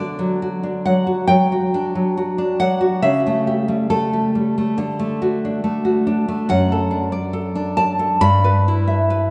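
A lone nylon-string guitar opens this romantic classical piece, fingerpicked with an acoustic, deep classical tone that sits up front in the sound. The mood is nostalgic and tender, moving at 69 BPM in 4/4 with a flexible rubato feel, and the playing spans from F#2 up to B5, with finger squeak audible on the strings. The harmony settles on D, passes through A7/C# at 3.1 seconds, returns to D, then moves to D/F# and closes on Em/G at 8.2 seconds. A wet church reverb with a long 3.4-second decay surrounds the guitar, giving the impression of a church or concert hall, and the high end stops at 10.4 kHz for a soft, rounded top. The passage lasts 9.3 seconds and is cut from a longer piece.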